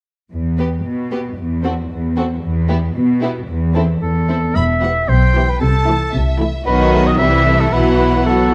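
A straight 2/4 pulse at 113 BPM drives this short, cut-off passage from a playful, whimsical film cue in E minor, carrying a mischievous, sneaky mood. Bowed cellos open the bass line at 0.3 s, smooth, even and up front, and the string sections soon join: the violins' melody sings with portamento and expressive vibrato in a close, warm sound, while a second violin line sits more distant, and the violas fill the accompaniment with a focused, lush tone. At 4.0 s a solo oboe adds its own second line, up front and classical in style, with a smooth top. The double basses arrive at 4.6 s as the music moves into its second section, doubling the bass deep below the cellos with a rich, focused weight. The harmony leans on E power-chord sonorities, a sly rootless F#7 shape and A minor before settling into E minor, A minor over C, and a quick B, C, Bsus4 turn. A light reverb gives the ensemble a gentle studio space.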